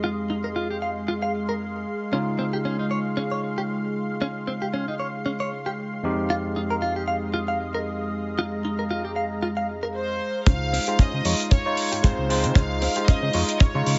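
A soft, darkened mix with light reverb opens on a gritty, barky electric piano and a lush, warbling pad that pumps gently. Beside them, a bright, clean electric guitar riff shimmers through chorus and dub echo, all over Fm7 and Dbmaj7 chords at 115 BPM with a lightly swung sensual, cosmic nu-disco feel. At 10.0 seconds a floating violin section takes the melody. At 10.5 seconds a fat, saturated analog bass, a tight, up-front kick and a small-room hi-hat join for a build-up as the guitar gets a filter sweep, in this cut from a longer piece.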